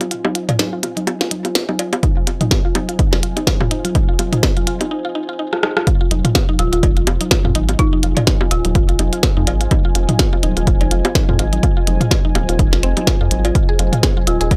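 A dry, punchy analog kick sits up front from 2.0 seconds, anchoring this cool, hypnotic stretch of minimal techno at 125 BPM in 4/4, with a 57% swing on the sixteenths in F minor over a single Fm7 chord. From the start, a tiny snare, clicky hats and rim clicks from a small-room click kit sit in the foreground, joined by layered electronic bongos, congas, toms and cowbell. A woody, round FM pluck with a noise layer carries the riff through chorus, tape echo and sidechain pumping, while a deep, moody sawtooth pad with a sub octave breathes underneath through its own chorus and reverb. The build-up brings a filter sweep on a synth arpeggio, a short break and a drum fill before the drop at 5.9 seconds, after which a rubbery, hollow square bass bounces in and pumps against the kick. A rustic, mid-forward folk marimba with medium hard mallets adds a brief melody from 6.6 seconds, echoing on tape. 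The whole cut is dry and gritty, with transformer saturation lending it a hardware edge.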